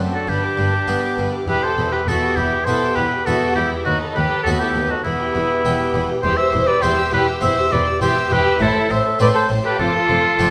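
In a straight 4/4 at 101 BPM, this lively, festive excerpt of a baroque-style classical concerto movement places a soft-attacked oboe up front on the melody, with a vibrato-laden violin section carrying a background melody and a second, focused violin section playing a lower line, while a distant viola section, an intense cello section and a smooth double bass section give bowed support alongside a brilliant, plucked harpsichord, the harmony settling into C major from 6.2 s inside a wet recital-hall reverb.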